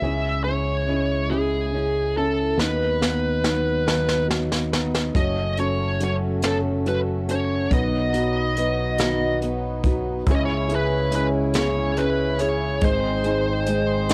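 Melancholic and aching, this short slice of a six-eight pop ballad moves slowly at 47 BPM in C# minor, with a hazy home-cassette sound and a snug booth ambience. A dark, distorted electric lead guitar carries the melody up front, bathed in plate reverb, over a soft felt-muted upright piano whose thick felt and audible action noise give it an intimate, vintage glow. A full-bodied jumbo acoustic guitar, fingerpicked and sitting in the background, spins arpeggios, while a round, direct fingered electric bass anchors the low end. Brushed jazz drums with a boomy kick and medium-tuned snare come in with a fill at 2.6 seconds, and a reedy, breathing pedal harmonium adds sustained chords from 5.1 seconds. The harmony drifts from C#m through B/D#, F#m and B before returning to C#m and resting on G#.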